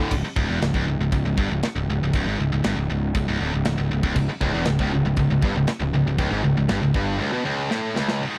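A straight 4/4 pulse at 118 BPM drives this heavy, aggressive metal excerpt in C# phrygian, where a bright high-gain guitar riff runs throughout, a second tight distorted guitar sounds briefly at the very start and returns at 4.2 seconds, a growly fuzz bass sits beneath, and a mid-forward drum kit with china and crash cymbals, a tight kick and a rolled-off top closes with a fill at 7.7 seconds, all in a dry, close 1970s-style studio sound.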